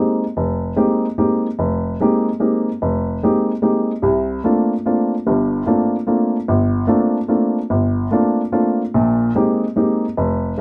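A solo baby grand piano carries this brief jazz excerpt on its own from 0.0 to 10.6 seconds, its dark, mellow tone sitting up front and close enough that the action noise of the keys comes through. The mood is intense and spiritual, set at 147 BPM in a 3/4 swing with a 66% lilt on the eighth notes. The harmony moves from Bb13sus4 to C13sus4 at 4.0 seconds and back to Bb13sus4 at 8.9 seconds, lending the passage a suspended, searching quality. The playing spans F1 to G4, and the instrument's short sustain keeps the voicings clear and natural rather than blurred. A light reverb and a dark, warm production frame the piano, with tuning set slightly high at A4 = 441 Hz.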